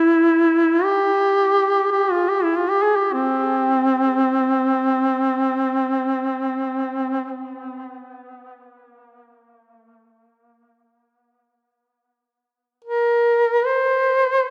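In free time, a solo duduk sings a mournful, longing Caucasian folk lament, tuned to A4 = 444 Hz and moving between C4 and C5 for the full 14.5 seconds of this fragment cut from a longer piece. Its warm tone sits up front, with a soft attack, vibrato and scooped notes in a folk manner, trailed by tape echo. A wet plate reverb with a 2.7 s decay soaks the mix, giving it a dreamy, hazy glow.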